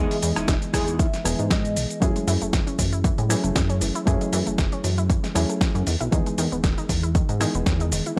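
A reedy, slightly out-of-tune electric piano with tape echo and sidechain pumping opens this cosmic, sleek nu-disco excerpt together with a glossy, chorused synth bass and a dark, clean electric guitar riff that adds a fill before stopping at 2.0 seconds. A gritty, sampler-style soul drum kit of hi-hat, rim click, shaker and snare sits behind a punchy, overdriven electronic kick placed up front, with a light sixteenth-note swing. From 2.0 seconds a lush, detuned unison pluck carries arpeggios through analog delay as the chords move from Emaj7 to F#m9 and back, in a dry, gritty hardware recording with digital ambience.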